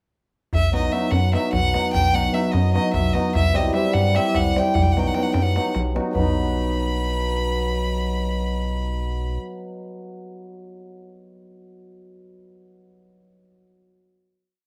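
Balkan folk in the manner of a Balkan wedding band, this short, complete piece races along at 299 BPM in a straight 7/8, restless and bittersweet, moving through B, C and back to B before settling on a final chord at 6.2 seconds. A clear, biting violin carries a motif-based melody in sentence phrases with vibrato and an airy bow, while an up-front, shimmering cimbalom rings out close-voiced off-beat chords and a rubbery, hollow square-wave bass with a filter pluck holds root and fifth on the main beats. In the background, a deep clay-shell darbuka plays a two-stick pattern with hard hands until 6.3 seconds, and the cimbalom rings on alone until 11.0 seconds in a moderate studio reverb.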